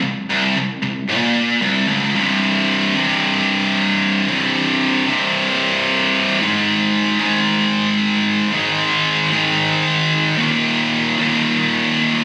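A scooped, high-gain electric guitar plays alone and up front for the whole of this short metal excerpt, cut from a longer piece. It is bright, picked and double-tracked, with distortion. The mood is epic and heavy, in C minor at 113 BPM in a straight 4/4, and the tuning sits slightly sharp at A4 = 441 Hz. The guitar opens on a rootless F#(#11)/B# chord, then settles at 2.1 seconds into power chords on C5, moving to Ab5 and then Eb5 at 10.4 seconds. The sound carries light reverb, studio reverb and compression, and it was captured on a phone in the room.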